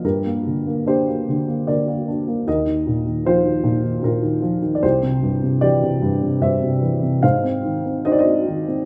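Reflective and dark, this brief classical excerpt in a three-beat rubato features a solo upright piano, mellow and woody with short sustain, sitting up front in a moderate recital-hall reverb as its chords move from G minor through E-flat suspended second and C major to A-flat across 8.9 seconds.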